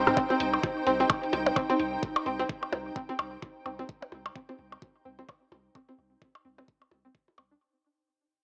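A bright, twangy resonator pluck leads this clinical, sparse minimal techno clip at 129 BPM in C minor. The pluck hovers between C4 and D4 over a single C minor chord, its vintage sawtooth tone warbling through chorus, phaser and tape echo as a filter sweep runs across it. Beneath it, a deep, punchy sine sub bass holds C2 with a pitch-drop attack, while a blurred, full-bodied granular cloud pad spans Eb4 to G5, bathed in its own reverb and fading out across the clip. A booming analog drum machine adds metallic, low-passed hi-hats and rim clicks, and tape-warm electronic toms and percussion blips sit up front with analog delay. A layered, knocking electronic kick enters at 0.2 seconds, and the swung 16th-note groove pumps through sidechain compression on the bass, pad and pluck, all within a dry, gritty, small-speaker sound touched by moderate digital room reverb.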